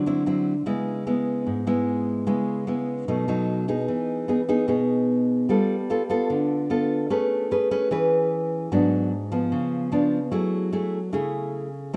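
A straight 4/4 bossa nova pulse at 149 BPM carries this melancholic, intimate piece in C# minor, played entirely by a solo nylon-string guitar. Fingerpicked in a classical manner and sitting up front, the full-bodied acoustic guitar moves through jazzy chords such as D9, C#m7, Emaj7, Amaj9 and C#7b9 before settling on F#m9, with a new section arriving at 3.9 seconds. A lush hall reverb surrounds the guitar in a rough home demo mix, and the passage is cut from a longer piece.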